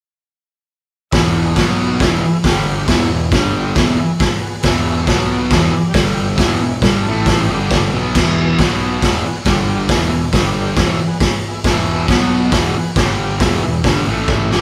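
Garage rock at 137 BPM in a straight 4/4, this rowdy, raw excerpt has a bright, double-tracked fuzz guitar riff up front over a saturated, gritty drum kit with a punchy kick, a fuzz picked electric bass in the background and a very quiet, buzzy combo organ holding sustained chords with heavy vibrato, all playing live in one room with moderate studio reverb, cycling around E, B5, G5 and A5 before a drum fill at 14.3 seconds.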